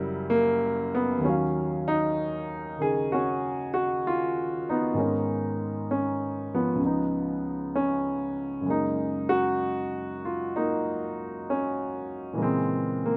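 Swung eighth notes in 4/4 give this slow jazz fragment an unhurried lilt, cut from a longer piece. A lone grand piano carries everything, its warm, natural tone sitting up front and ranging from deep bass notes to bright upper phrases. A short slapback echo trails the piano, and a light reverb adds a touch of space to an otherwise dry, open-air sound. The harmony opens on an altered dominant before settling at 1.2 seconds into a melancholic minor-ninth color, then moves through add9, dominant seventh and six-nine chords before closing on a half-diminished shade at 12.4 seconds. The mood is intimate and melancholic.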